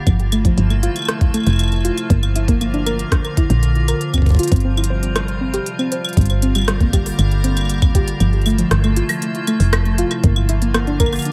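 Eerie and glitchy, this short IDM cut from a longer piece moves at 118 BPM in a straight 4/4, centred on G dorian. An icy, crystalline glass pad holds sustained chords with slow attack and long release, its chorus and built-in reverb shimmering as sidechain pumping makes it breathe against the beat. A soft, round pluck with a filter sweep spins arpeggios through chorus and analog delay, while a woody FM bass with a fast, decaying attack sits dark and up front at the bottom. A compressed, pitched-up kick lands gritty and thumpy, joined by a tape-warm electronic kit of claves, crisp hats and rim clicks, re-recorded in a small room, that echo through analog delay. After a break from 5.2 to 6.2 seconds, the harmony settles onto Gm7 and cycles back through Fmaj7/G and Bb/G, all bathed in an echo-heavy digital ambience.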